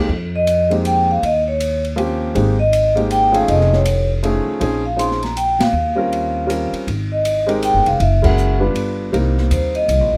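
Grand piano and upright bass open this short cut from a longer small-group jazz piece, a smoky, moody swing waltz in F minor at 159 BPM with a lilting swung feel. The piano sits up front with a warm tone, laying down rich harmony such as Fm11, Eb13, Abmaj9 and F7alt, while the pizzicato bass sounds woody and close in the low register. A moment later the drums join, quieter in the mix, with dark, smooth cymbals, a high-tuned snare and a boomy kick heard in a small room. From 0.4 seconds the vibraphone carries the melody, loudest of all, its metallic, ringing medium-mallet tone placed in a boxy space. The band hits a shared accent at 5.5 seconds and again near the end of the first section, and at 9.1 seconds the vibraphone steps into a solo over a Cm7 chord as a new section begins, all within a dry, intimate sound.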